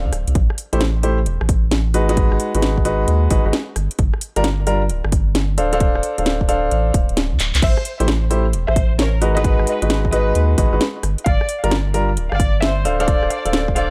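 A swung, skipping two-step groove drives this bouncy, soulful UK garage cut, with a punchy, tape-warm electronic kick sitting under a layered house kit of cracking snare, metallic hi-hats, handclaps, rim clicks and crash cymbal, all set in a small room ambience. A deep, thick sub bass with a triangle-like tone and tube saturation sits up front from the very start, its fast attack and sustained notes anchoring the low end. Clear, intimate grand piano stabs carry the harmony, cycling through Am7, G#m7, G5 and Dm7 with a touch of delay and audible key action noise. After a drum fill at 7.4 seconds, a rich studio violin section enters at 7.6 seconds with a smooth, even, vibrato-laden melody touched by digital delay. The mix is dry and close, with little reverb, and the passage is cut from a longer piece.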